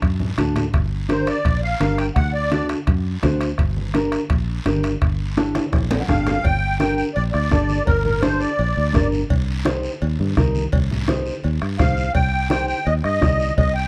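Danceable and driving, this cumbia excerpt at 168 BPM in G minor sets a round, foam-muted fingered electric bass and soft-beater bombo under ringing timbales and cowbell, a raspy, distant guiro and low-tuned congas in the background, while a dark, compressed clean electric guitar accompanies from 0.4 seconds and a reedy, shimmering musette accordion carries the melody in short phrases up front, in a dry, close 1970s-style studio sound.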